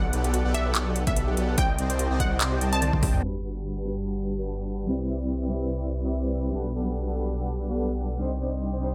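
A half-time future bass groove at 145 BPM in 4/4 with a light 16th-note swing sets a bright, playful mood in G major. This is cut from a longer piece. It opens on a drop where a trap kit with metallic hats, claps and toms, joined at about 1.1 s by a punchy, layered electronic kick, drives a bright, detuned unison pluck melody, a soft, round triangle pluck playing arpeggios in the background, an airy, smooth supersaw riff and a thick, up-front detuned saw bass, all of them breathing with sidechain pumping. After a drum fill the drums and plucks stop at about 3.2 s, and a dark, clean, fingered electric guitar with tremolo and dub echo takes over the accompaniment beneath a long filter sweep, with light reverb and digital ambience around the mix.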